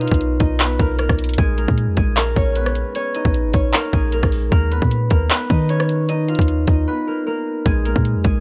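Menacing and melancholic, this half-time trap excerpt at 153 BPM in Bb phrygian sets a bright, fingerpicked concert harp, ringing and up front through a low-pass filter and analog delay, over a deep, boomy, sine-like 808-style bass and an electronic trap kit of hard-clipped kick, bright hi-hats, handclaps and rim clicks, all captured dry and gritty with a brief break at 6.9 seconds before the chords return to Bbm.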